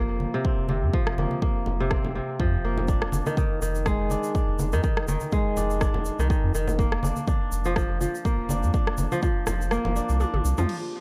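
A driving afro house groove at 123 BPM in 4/4 rides a light 16th-note swing, anchored by a punchy, layered electronic kick and a house drum kit that adds crash cymbal, rim clicks and toms. Up front, a crisp, ringing fingerpicked kora plays arpeggios with dub echo and sidechain pumping. A round, deep analog bass with a nasal edge pumps underneath. Damped, low-tuned congas with a saturated bite fill the percussion, and a grainy egg shaker joins at 2.9 seconds. The harmony moves from F5 through Ab6/F to Bb/F under light reverb. The kick drops out at 9.7 seconds, a drum fill closes the section, and a very quiet, ethereal airy pad surfaces at 10.8 seconds as this excerpt from a longer piece ends.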